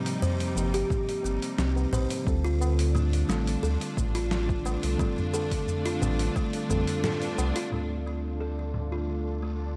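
A close, lightly reverberant mix carries this hypnotic, mystical organic downtempo excerpt, where a buzzing, woody kalimba plays delayed arpeggios over muted felt-like synth keys, a lush bowed string section that gets a filter sweep from 7.7 seconds, a round, up-front sub bass, gritty sampler-style drums, ringing low-tuned tabla and a punchy electronic kick, with the band accenting at 7.0 seconds.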